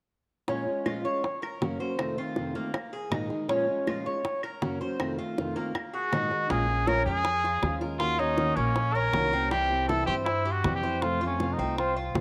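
A danceable, nostalgic Cuban son and guajira in Bb minor at 159 BPM opens with a dark, full-bodied fingerpicked acoustic guitar and a bright, metallic Cuban tres playing arpeggios over round, low-tuned bongos, with compressed, saturated claves joining moments later. A punchy, vintage trumpet with vibrato takes the melody up front from 5.9 s, and a thumpy pizzicato upright bass enters at 6.5 s as the chords move through Bbm7, Ebm7, C and F, with a reedy silver flute adding a brief C5 at 11.8 s. The guitar, tres, trumpet and flute carry a cassette tape coloring, and the home recording sits in a small room with light reverb.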